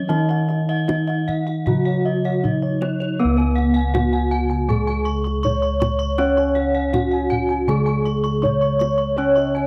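A dry, close recording in a 1970s studio style, touched with light reverb, frames this ceremonial, shimmering Javanese gamelan passage cut from a longer piece in a steady, straight four. The bronze metallophone melody is played with padded disc mallets, mellow and airy, its paired tuning producing shimmering beats, and a tape echo trails behind it. Beneath it, a second metallophone carries the accompaniment with a wooden mallet, sounding full and close-miked. A third metallophone, struck with a horn mallet, spins bright arpeggios up high, while bossed gongs add dark, smooth arpeggios of their own. Round, beating bossed gongs anchor the bass with padded beaters, soft and slightly boxy, and the kendang adds tight, acoustic percussion under soft hands. The opening phrase gives way to a new section at 3.2 seconds, and the full ensemble plays through to the end at 9.7 seconds.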